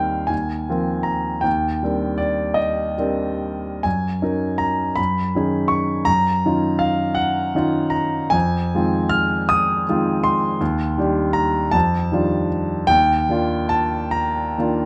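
A clear, intimate grand piano plays alone and up front in this hazy, nocturnal fragment of impressionist classical music, drifting in rubato 6/8 at about 43-55 dotted-quarter beats per minute through lush extended harmonies from Bb9sus4/Eb and F#69 to a closing Ebmaj9, spanning Eb2 to F6, with its action noise audible through close, detailed, nearly dry miking.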